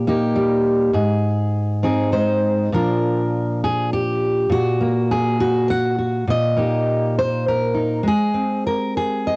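A fingerpicked steel-string acoustic guitar opens this short excerpt alone, its dark, full-bodied jumbo tone sitting up front in light reverb as a cassette home recording. The folk piece moves in a straight 3/4 at 101 BPM in Bb mixolydian, drifting from Eb/Bb and Ab into a second section at 2.7 seconds that cycles through Bb, Gb/Bb, Eb/Bb and back to Ab. The mood is gentle and nostalgic, and the fragment is cut from a longer piece.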